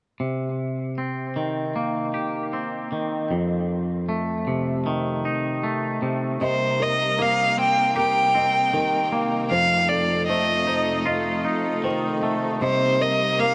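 A huge ambient reverb hangs over this brooding, cathartic rock excerpt, where a twangy, scooped electric guitar sits up front with clean fingered arpeggios, colored by warbly pitch drift and tape echo, alternating between Cm7 and F7 chords. At 6.4 seconds a rich, smooth violin with vibrato takes the melody up front, while a bright, lush studio string section holds sustained chords and a felt-muted upright piano adds soft, dark arpeggios with audible action noise in the background. The violin and piano also carry tape echo.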